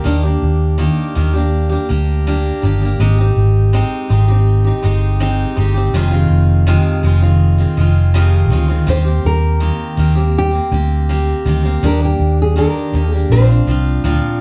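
A round, dark, foam-muted electric bass sits up front beneath a bright, full-bodied picked steel-string guitar in this heartfelt, sunny acoustic pop excerpt at 82 BPM in Eb major, while a thumb-plucked nylon-string guitar with audible finger squeak carries the melody briefly at the start and returns at 8.9 seconds, all over chords moving from Ebmaj7 through Abmaj7, Fm7 and Cm7/Eb, back to Ebmaj7 and on to a closing Bbadd9 in light small-room reverb.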